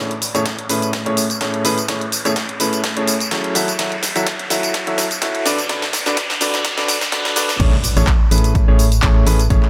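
A clear, woody upright piano opens this feel-good piano house clip with an uplifting riff, roughened by vintage 12-bit sampler grit, pumping against the beat, shaded by a low-pass filter and trailed by tape echo, while an electronic riser starts building beneath it. A layered, overdriven house kit sits up front with a cracking snare, handclaps, hi-hat, tambourine and crash cymbal, and a punchy, tape-warmed electronic kick joins at 0.5 s from further back in the mix. The opening passage is a build-up with a drum fill and a filter sweep, moving through lush major-seventh, minor-seventh and sixth chords. At 7.6 s the drop lands on an electronic impact, and a hollow, dark, organ-like FM bass enters with a percussive, fast attack, a decaying tone and its own sidechain pumping. Light digital reverb lends the whole an airy sheen before this excerpt from a longer piece cuts off.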